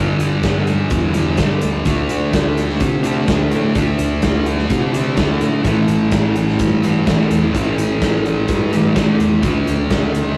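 A thick fuzz guitar and a fingered electric bass open together, with the guitar's dark, double-tracked riff sitting up front over a growly, overdriven bass line. A big acoustic rock kit joins at 0.2 seconds, its punchy kick, medium-tuned snare and hi-hat ringing in a large room with a mid-forward presence. This short cut from a longer shoegaze and dream pop piece moves at a steady, straight rock pulse in 4/4. The picked, distorted guitar works through power chords on G, D and A, reaching the A chord at 5.6 seconds before settling on D again at 9.4 seconds. The hazy, dreamy mood comes from the rough rehearsal-room sound, with moderate reverb, saturated grit and lossy compression artefacts blurring the dense fuzz.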